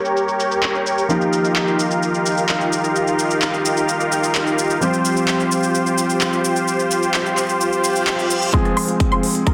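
Euphoric and emotional, this short cut from a festival progressive house track opens with a huge, thick supersaw riff up front alongside a warm concert grand piano accompaniment, both pumping with sidechain compression and carrying tape echo over chords moving from Gdim through Ebadd9 to Csus4, while a big-room dance kit with crisp hats, handclaps, rim click and shaker enters at 0.1 seconds under low-pass filtering. A reverse cymbal rises at 7.9 seconds. At 8.5 seconds the music lands on Fm for a build-up with a filter sweep, adding a punchy up-front electronic kick, a lush unison pluck arpeggio in the background and a very quiet, menacing detuned saw bass, all set in a moderate room reverb and a dense, heavily limited modern master.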